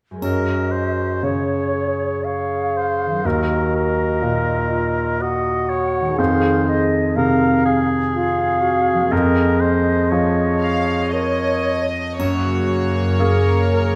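In a free, rubato 3/4 at 60 BPM, this uplifting, moving cinematic cue in Gb lydian opens with ringing harp arpeggios and a brilliant, up-front grand piano carrying the accompaniment, while airy flute, dark clarinet and smooth-topped oboe weave second lines above a faint triangle. At 10.6 seconds a soft, floating violin section takes the melody, and at 12.2 seconds the harmony returns to Gbadd9 as a rich sul tasto viola section and an intimate cello section enter on a low Gb. The orchestra sits in a moderate scoring-stage reverb.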